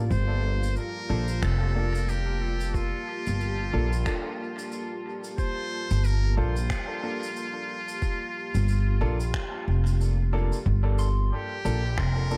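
An echo-heavy, hazy ambient dub excerpt at 91 BPM in G minor, where a deep, dark pad with chorus holds a Gm7 chord under woody pizzicato upright bass, a thumpy pitched-down electronic kick, distant shaker and finger snaps, a buzzy metal-muted trumpet melody through tape echo, bright upright piano stabs with dub echo entering at 1.1 seconds, and a clean pedal steel guitar adding high arpeggios from 11.0 seconds.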